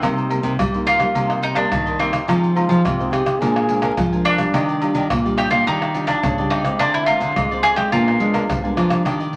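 Lively and playful, this short samba-and-choro excerpt at 106 BPM sets a mellow, round mandolin melody up front over crisp cavaquinho in the background, two fingerpicked nylon-string guitars (one deep and classical on accompaniment, one full-bodied on bass, both with audible finger squeak), and hard-handed agogo bells, egg shaker, tight surdo, pandeiro and tamborim, while a breathy, scooped jazz trombone slips in a brief second line from 2.6 to 4.1 seconds, all moving through Cm7, Fm7, Bb7, Ebmaj9, Dm7b5 and Bb7b9 in a wet club reverb dusted with vinyl crackle.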